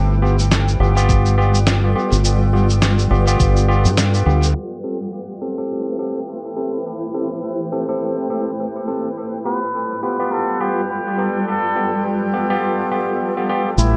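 A barky, lightly overdriven tine electric piano stabs up front through dub echo and a long filter sweep in this meditative, hazy ambient dub excerpt at 104 BPM with a swung 16th feel, floating over a cloudy granular pad on G7 and Am7 chords while a thumpy background kick drops out at 3.5 s and a round, punchy fingered bass and muffled pitched-down cabasa and snare fall away after 4.5 s, leaving space for a veiled, cup-muted trumpet melody that arrives with dub echo at 9.5 s inside a moderate recital hall ambience.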